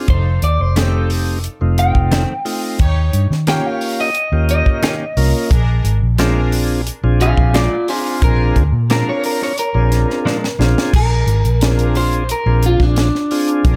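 Straight-eighth soul blues in Bb mixolydian at 88 BPM, this soulful, gritty excerpt moves through F7, Eb7 and Bb7, with a slightly broken-up electric guitar through a small old amp carrying the melody under spring reverb while a smooth tonewheel organ with key click and slow rotary speaker supplies accompaniment. A dark, foam-muted fingered bass and a tight, dry funk kit with a high-tuned snare sit up front, a clean direct-recorded guitar adds picked stabs from 0.8 to 10.5 seconds, and a soft-attack studio string section floats in the background on sustained chords. A drum fill at 10.3 seconds leads into a repeat of the section at 10.9 seconds, all under light reverb.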